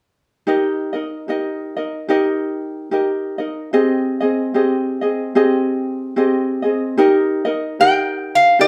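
A bright, nasal metal-body resonator slide guitar, played with fingerpicks and sitting up front, arrives at 7.8 s with a brief metallic melody over a light, thumb-plucked acoustic ukulele that has carried the Eb, Abmaj7 and Eb chords since 0.5 s, giving this dreamy, sunny Hawaiian excerpt at a relaxed 74 BPM with swung eighths the feel of a band playing live in one room, wrapped in a lush studio reverb.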